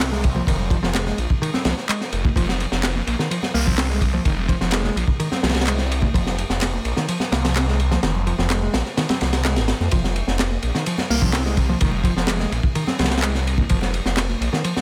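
Playful and funky, this breakbeat excerpt moves at 127 BPM in a straight 4/4, sitting on an F minor chord throughout. Up front, a crunchy breakbeat kit recorded in a small room carries punchy kick, a high-tuned snare, hi-hat and dark ride cymbal, its saturated, gritty tone rolled off at the top. Beside it, a phased, detuned saw bass rumbles between F1 and F2, thick and swirling with a fast attack and sustained, saturated notes. A bright, punchy picked electric bass plays a riff from Eb3 to C4, roughened by vintage 12-bit sampler grit and trailed by delay. Very quiet layered electronic handclaps add to the groove, while ringing, high-tuned congas played with hard hands enter at 0.3 seconds and stay in the background.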